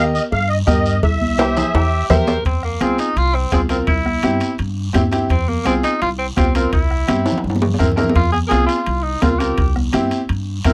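A shimmering, reedy musette accordion opens this passionate, danceable cumbia in F harmonic minor at 168 BPM, with a bright, slightly detuned upright piano and a woody, thumpy pizzicato upright bass, as the guiro, ringing cowbell and timbales, soft-beater bombo and high-tuned congas fill in the groove within the first second; the accordion then gives way at 2.1 seconds. A clear tenor saxophone with scooped notes enters at 1.4 seconds and takes a pop-style solo from 2.5 seconds over alternating Fm and C chords, punctuated by drum fills, all captured in a dry, close 1970s-style studio sound.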